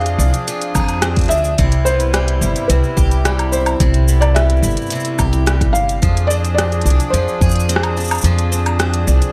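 A straight 4/4 pulse at 108 BPM in C major drives this pastoral, playful folktronica piece: a tape-warm organic electronic kit of smooth hi-hats, rim click, shaker and woodblock is joined by a deep electronic kick from 0.8 to 7.5 seconds. Up front, a woody, thumpy pizzicato upright bass on gut strings anchors the low end, while a bright, shimmering, octave-doubled twelve-string acoustic guitar picks boxy arpeggios through tape echo. A reedy, sweet accordion with light tremolo tuning holds sustained chords, and an intimate felt-muted upright piano, mellow and with audible action noise, carries the melody through its own tape echo over a Fm6 to Cmaj7 and back to Fm6 progression in a small room.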